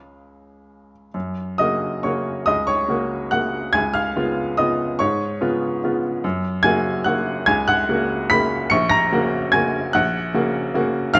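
In a 3/4 waltz time, with tempo drifting between 124 and 154 BPM, this brief classical piano passage breathes with rubato and carries an elegant, playful mood. A single upright piano plays alone in F# major across a span from A#1 to C#7, its tone bright, woody and polished, with short sustain and audible action noise that give it an intimate, up-front presence. After a short opening on C#, the harmony settles on F# at 1.1 s, moves through C#7 and back to F#, then closes on F#/A#. Close, detailed microphones capture the instrument in a moderate recital hall reverb that lends gentle air around the notes. It is a fragment cut from a longer piece, ending at 11.2 s.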